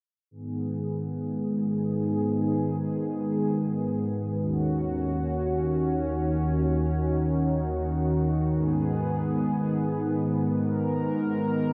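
A thick, detuned sawtooth pad with chorus and slow attack plays sustained chords from 0.3 to 11.7 seconds, moving from G# minor to D# minor seventh and back under a filter sweep, with its bright, up-front sound set in a long, wet hall reverb inside a dark synthwave production that feels nocturnal yet driving.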